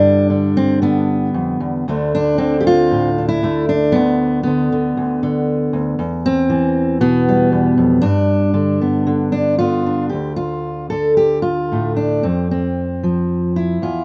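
Folk fingerstyle in D dorian at 116 BPM with a rubato feel, this wistful, melancholic 14-second excerpt cut from a longer piece features a solo fingerpicked steel-string dreadnought acoustic guitar, full-bodied and up front, ranging from D2 to A4 through G, Dm, a chordless passage, Em and G before shifting at 10.1 seconds to a new section on Dm and F5, all captured with small room ambience in a rough home demo mix tuned to A4 = 443 Hz.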